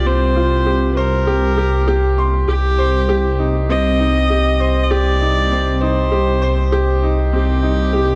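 Piano and strings electronica with a moving, hypnotic mood, cut from a longer piece, where a woody upright piano riff with long sustain and a bowed viola melody carrying light vibrato and a reedy gut-string tone both play through delay across all 8.2 seconds. Beneath them, a deep, rumbling detuned saw bass sits up front and holds a single low note with tube saturation, its unison voices beating against each other. The harmony moves from Fsus2/C to C minor at 2.5 seconds, and the dark production sits in a small room with light reverb.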